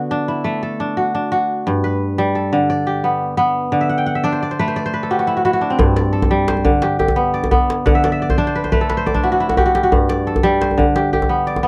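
Hypnotic and warm, this excerpt of West African string music moves at 116 BPM in dotted quarters, in a 12/8 metre and G major. An up-front fingerpicked kora spins ringing, crisp arpeggios across G2 to G5 over an alternating D and G harmony, breaking into fills at 3.8 and 7.9 seconds. A tight, cracking djembe joins at 5.8 seconds in a small room, all set in a dark production with light reverb.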